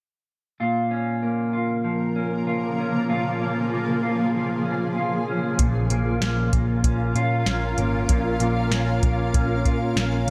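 A mellow, dark electric guitar opens at 0.6 seconds with clean, fingered arpeggios, set up front and bathed in lush chorus and delay, establishing a dreamy, blissful dream pop mood at 96 BPM in 4/4 over a B-flat minor chord. At 1.7 seconds a shimmering, ethereal ambient pad joins with sustained chords, its slow attack, octave-up shimmer and detuned, granular texture evolving gently under chorus and its own built-in reverb. At 5.6 seconds the music moves into a new section as a vintage muted picked electric bass enters, round and punchy with a foam-muted, amped tone. A soft vintage rhythm box arrives at the same moment, its analog character heard in a deep kick, crisp snare and metallic hi-hats placed up front. A moderate, lush hall reverb surrounds the ensemble, and the passage is cut from a longer piece.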